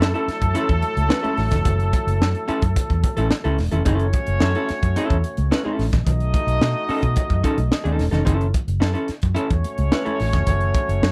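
A round, dark, foam-muted fingered electric bass anchors this sly, funky 109 BPM groove in F# dorian, cut from a longer piece, with a crisp, up-front fusion kit (punchy kick, high-tuned snare, hi-hat, pumping small room), a clean, picked hollow-body jazz guitar comping up front over F#m7 and B9 until it drops out at 10.2 seconds, a loose pop-style horn section with vibrato and octave doubling as a smooth second line, and soft-handed, thick-skinned congas tucked in the background of a nearly dry mix.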